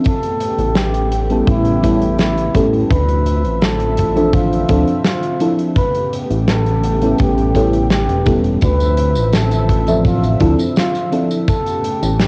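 A straight 84 BPM 4/4 pulse carries this hazy, woozy vaporwave excerpt in D dorian, where a breathy, whispered flugelhorn sings an intimate jazz-style melody over a dreamy FM electric piano with phaser, lush chorus and analog delay, a thick, detuned unison pad, a glossy up-front chorused synth bass, and a big-room acoustic kit of tight kick, medium-tuned snare, hi-hat and tambourine, all moving between A9 and Dm9 with cassette-tape softness on every part but the bass.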